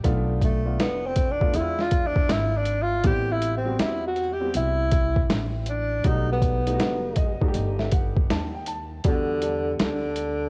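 A breathy tenor saxophone carries the melody from 0.4 seconds, its subtone, scooped notes and gentle vibrato sounding whispered and intimate in a roomy space, touched with tape echo and placed up front. This mellow, smoky jazz-hop clip, cut from a longer piece, sits in a relaxed, swung 4/4 hip hop groove, with the saxophone soloing over rich extended jazz chords. A boom bap sampler-style kit of hi-hat, thumpy kick and medium-tuned snare is prominent: compressed, pitched down and gritty, with vintage 12-bit sampler crunch and cassette coloring. An upright bass plucks a woody, dark line on steel strings, while a smooth, vintage-sounding grand piano with short sustain supplies accompaniment through cassette tape and adds a fill from 6.8 to 9.0 seconds. The recording has the hazy character of a home cassette session bathed in studio reverb, and a new section begins at 9.0 seconds.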